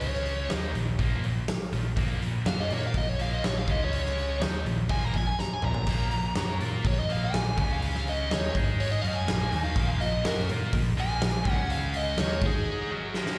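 Heard through a live venue's PA with recital-hall reverb and a touch of small-room ambience, this heavy, aggressive hard rock excerpt in Bb minor drives along at 123 BPM in a straight 4/4, built on power chords around Db5, Bb5 and Ab5. A biting, overdriven lead guitar solos across the whole passage over a scooped, double-tracked high-gain rhythm guitar riff, while a picked electric bass adds a growly, amped low end. A huge arena drum kit with a punchy kick and medium-tuned snare sits up front, throwing in a fill at 5.4 seconds before a brief break from 12.7 seconds.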